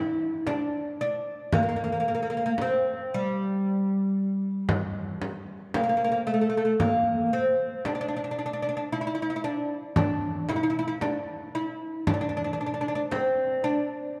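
A steady 10/8 metre with a straight feel carries this short passage from a Turkish makam ensemble piece, cut from a longer performance. The mood is longing and melancholic. A fretless oud leads the melody from the very start at 0.0 seconds, its plectrum-plucked double strings sounding woody and acoustic, placed up front. A frame drum joins at 0.5 seconds and drops out at 13.4 seconds, played with hard hands and carrying the close, small-room character of an acoustic drum, also up front. A wet concert-hall reverb with a long tail surrounds the pair, and the production leans dark and warm.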